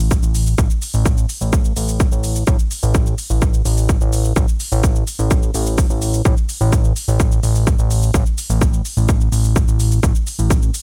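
Hypnotic and cinematic, this short cut from a longer melodic techno piece moves at 127 BPM in a straight 4/4. A fat, thick analog bass sits up front around A1, its warm sawtooth and square-wave tone mellow and sustained, with a fast attack, a moving notch and sidechain pumping. An overdriven electronic kick drum, heavy and layered, also sits up front with a touch of studio reverb. Beneath it, a quieter electronic shaker and hi-hat layer adds smooth, overdriven hats that pump with sidechain and carry their own reverb. The mix feels echo-heavy overall, though the space around it stays fairly dry, and the single section runs from start to finish across roughly 10.8 seconds.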